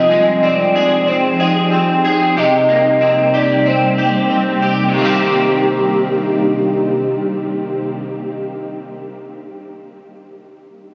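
An electric guitar sits up front at the edge of break-up, its bright, twangy picked arpeggios thickened by ensemble chorus and delay, and it rings on alone after the other parts stop at 8.3 s until 9.1 s. Above it, a soft octave-layered synth lead carries the melody with a full, round tone that leans dark, shimmering with chorus, tremolo, vibrato and delay. Alongside them, an ethereal airy pad holds sustained chords with a slow attack and long release, its detuned sawtooth unison colored by ensemble chorus and its own reverb. This hazy dream pop fragment in straight 4/4 is cut from a longer piece and moves from Fm7 to Cm7, shifting into a new section at 4.9 s. The whole mix is bathed in a huge, wet ambient reverb with a long tail, and its phone-in-the-room capture and compression add a veiled, intimate quality.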